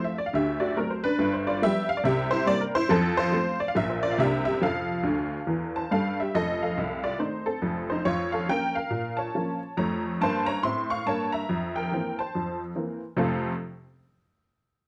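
Stride jazz in F major swings along at 140 BPM with a playful, swinging mood, cut from a longer piece. A solo honky-tonk upright piano carries everything from 0.0 to 13.5 seconds, its detuned, jangly, vintage tone sitting bright and up front across a range from F1 to Db6, with a fill around 5.0 seconds leading into a new section at 6.3 seconds. The production is dark overall with a light reverb, while the chords move through dominant sevenths before settling back on F at 13.2 seconds.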